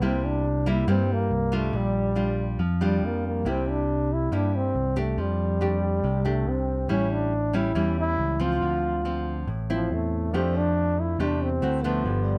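Bossa nova with a sophisticated, breezy mood, this short piece is cut from a longer performance and moves in a straight, even feel. A breathy trombone carries the melody up front, its mellow, whispered tone shaped by vibrato, a soft attack and scooped notes that give the solo an intimate jazz character. Beneath it, a fingerpicked nylon-string guitar adds woody, classical colour with the dull sheen of old strings, while a picked electric bass sits equally forward with a bright, growly, punchy amped sound. At 10.3 seconds a warm grand piano slips in very quietly, its long sustain and audible action noise adding a natural, intimate glow. The harmony moves through rich chords such as C7, F69 and Dm9, and the close, detailed recording with little reverb keeps every part present and immediate.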